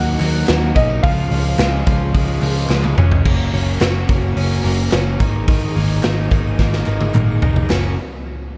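This short excerpt of breezy, youthful jangly indie pop opens with a clear, woody upright piano, slightly detuned and worn, carrying the melody through plate reverb and analog delay until it drops out at 2.7 seconds. Underneath, a bright, twangy twelve-string electric guitar picks compressed arpeggios bathed in spring reverb and delay, while an overdriven, lo-fi garage guitar sits in the background and a very quiet string machine holds shimmering, slow-attack violin chords. At 108 BPM in a straight 4/4, a muted, round electric bass anchors the low end as a punchy, saturated drum kit sits up front in a pumping stone room, with a crisp, dry group handclap tucked far beneath. The harmony moves from D#m and C# toward F# major and a G#sus2, with drum fills marking the turn at 3.3 seconds and again near the close. The overall production is dark and lightly reverberant, giving the gritty drums and jangling guitars a cozy, vintage cast.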